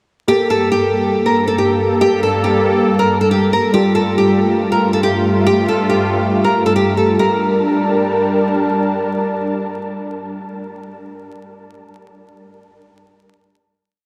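A dreamy mix soaked in huge ambient reverb and vinyl crackle frames this brooding, hard-hitting trap piece in G minor at 139 BPM with a half-time feel, moving from Gmadd9 to Fadd9/G and back. Up front, a bright, full-bodied nylon-string guitar fingerpicks a classical looping melody through analog chorus and delay, like a sampled loop. A very quiet, dark and mellow grand piano holds spread chords beneath it until 7.2 seconds, while an airy, detuned sawtooth pad with a noise layer and filter swell sustains its evolving chords through to 10.3 seconds on the final Gmadd9.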